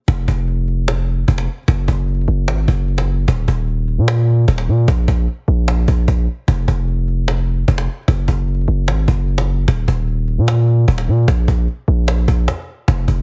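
Brooding and melancholic, this half-time trap excerpt sets long, deep, sine-like 808-style bass notes with a fast attack and a decaying tail against a woody, up-front cajon struck with hard hands and faint snares, all in a small room with a heavily compressed radio sound, before a brief stop at 12.5 seconds.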